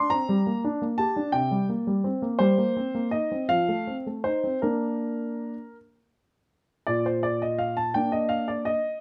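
A 6/8 metre counted in dotted quarters at a relaxed 52-58 BPM moves with a flexible, rubato feel in this short cut from a classical-period piano sonatina in Bb major. The mood is cheerful and graceful, carried entirely by a solo grand piano whose tone is warm, present and up front, with long sustain letting each harmony ring. Its range runs from Bb2 up to C6. The harmony passes through G minor, C5, Cm7 over G and F7 before settling on Bb at 4.6 seconds, and a new section begins at 6.9 seconds. Light reverb gives the instrument a gentle sense of space through to the close at 9.0 seconds.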